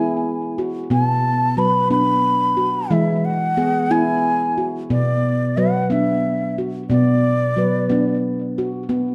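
Set in a dark, reverberant recital hall with a touch of small-room ambience, this hypnotic, gentle excerpt of meditative world music sways in 6/8 over chords that alternate between E and Bm. A ringing, bright handpan of nitrided steel sits up front, playing arpeggios with sharp finger strokes through a tape echo until 9.1 seconds. Alongside it, a breathy bamboo bansuri carries the melody, tongued and colored with vibrato, before falling silent at 8.2 seconds.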